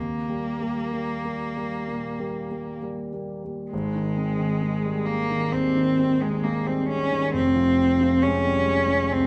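This is a romantic classical duo for cello and grand piano, a tender fragment cut from a longer piece that moves in an unhurried four-beat pulse with a freely breathing rubato. A single bowed cello carries the melody throughout, its tone rich and smooth, with an even vibrato that sounds slightly distant yet sits up front in the balance. Beneath it, a warm concert grand supplies the accompaniment, reaching down into deep bass, with an intimate, vintage character, long sustain and audible action noise. The harmony rests on Eb before shifting to Ab at 3.7 seconds, where a second phrase begins and later darkens toward F minor. A moderate recital hall reverb surrounds the pair, and the sound stays soft and rounded at the top until the fragment ends at 9.3 seconds.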